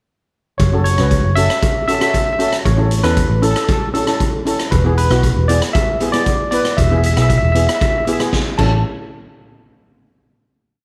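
A bouncy, carefree calypso groove from a roomy, up-front street-band drum kit with a boomy kick and high-tuned snare drives this short piece, alongside a round, foam-muted electric bass playing a syncopated figure and a distant cowbell pattern sitting in the background. A barky, gritty electric piano with phaser carries a motif-based melody in period phrases, while cello steel pans add shimmering, airy triad chords over F#m7, A and E. A drum fill at 8.3 seconds leads into a final hit at 8.8 seconds, all in light reverb.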